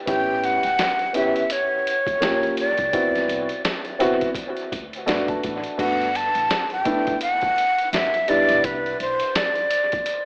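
A breathy, mellow silver concert flute carries the melody up front in this cool, smooth jazz-hop piece, its close-miked straight tone tongued and unsteady, trailing dub echo. At 84 BPM in 4/4 with a 16th-note swing, an upright piano in G major supplies woody, vintage accompaniment, also up front and dressed in dub echo, with a fill from 4.7 to 5.8 seconds. Beneath it, a pizzicato upright bass with steel strings sits thumpy and in the background, stopping at 9.2 seconds. A gritty, compressed, pitched-down boom bap sampler-style drum kit re-recorded in a large room pairs a thumpy kick and medium-tuned snare with hi-hat and crash cymbal, its hits echoing dub-style. The harmony moves through colourful chords such as A7, Eb9, Gmaj9 and Cmaj9, shifting into a second section at 5.8 seconds. Light studio reverb, an echo-heavy mix and an AM radio sound shape the character of this fragment of a longer piece.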